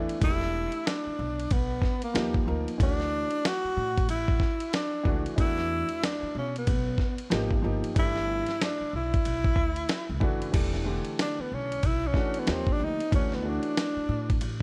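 Mellow and cool, this swung jazz-hop fragment cut from a longer piece sets a breathy, whispered tenor saxophone with analog delay up front over a gritty, compressed sampler-style drum kit with a thumpy kick, woody pizzicato upright bass and smooth, vintage upright piano accompaniment in a studio reverb, with the saxophone taking a solo from 10.5 seconds.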